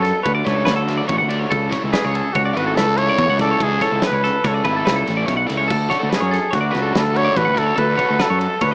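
This brief excerpt has the rough feel of a home demo heard through a small speaker, with a moderate plate reverb around the parts. It is wistful but bright math rock with a midwest emo lean, set in an odd 5/4 metre with a straight feel. Up front, a raspy, growling trumpet carries the melody with light vibrato, a soft attack and a smooth top. A clean, twangy twelve-string electric guitar rings out arpeggios, and a warm, growly fuzz bass, played with the fingers and overdriven, sits forward in the mix. A loose indie drum kit with a fat snare, punchy kick and dark crash and ride cymbals pumps in a studio room, while a double-tracked, overdriven electric guitar riff hovers in the background from 0.4 to 8.3 seconds. The harmony moves from Dmaj7 to Aadd9 and back to Dmaj7.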